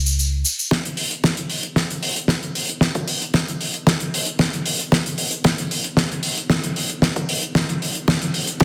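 Nu-disco at 114 BPM in a straight 4/4, this feel-good, groovy fragment from a longer piece is a drums-only build-up and fill, led by an up-front, damped 70s kit whose dry, mid-forward hi-hat, shaker and fat, softly clipped snare carry a rolled-off top, joined at 0.7 seconds by a punchy, layered electronic kick that sits in the background, tape-warm and re-recorded in a large room, all under a wet plate reverb and a dense, heavily limited modern master.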